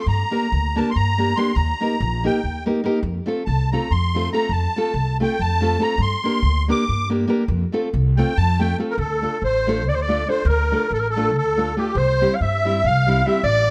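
A reedy, shimmering musette accordion opens this festive, virtuosic Balkan wedding-band fragment with a solo in 7/8 at 283 BPM, carried by fingerpicked nylon-string guitar, with audible finger squeak, and a woody, thumpy pizzicato upright bass, all three placed up front. At 8.9 seconds a bright, classical-style clarinet enters with the solo melody, and from 9.0 seconds the music moves from F mixolydian into D minor. The recording is close and detailed, with light reverb.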